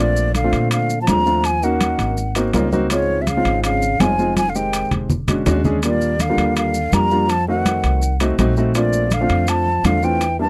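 A straight 4/4 pulse at 164 BPM drives this sophisticated, danceable Afro-Cuban jazz excerpt in Bb major, where a breathy, hollow silver concert flute with vibrato carries the melody up front over a mellow, scooped trombone second line in the background, a natural-sounding baby grand piano in accompaniment with short sustain, a woody, thumpy pizzicato upright bass, bright thin-skinned congas, ringing, saturated timbales and grainy maracas, with a drum fill from 4.4 to 5.8 seconds and a dry, close 1970s-style studio sound touched by light reverb.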